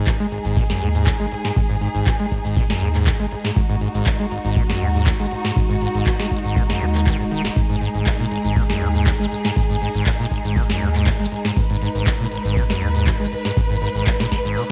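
A lightly swung groove drives this trippy, gritty acid house excerpt: a deep electronic kick anchors a booming analog drum machine with crisp snare, metallic hi-hats, handclaps, cabasa and ride cymbal, both re-recorded in a large room and tape-warmed on cassette. A squelchy, resonant sawtooth acid bass riff with filter sweeps, tube saturation, subtle chorus and tape echo runs throughout, over a round sine sub bass. Muted, veiled strings played con sordino hold lush, dark sustained chords with vibrato, the strings, acid bass and sub all pumping with sidechain in a dry, homemade cassette sound.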